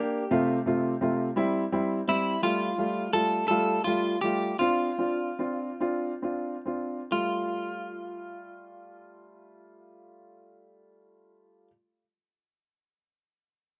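Recorded dry and outdoors with little reverb, this heartfelt, romantic pop excerpt in 6/8 sets a clean, picked electric guitar melody with compressed tone and slapback echo over a clear, open baby grand piano accompaniment with long sustain, both up front and playing throughout, as the music slows between 2.4 and 7.1 seconds while moving through chords such as F/C, Fadd9 and Dm7.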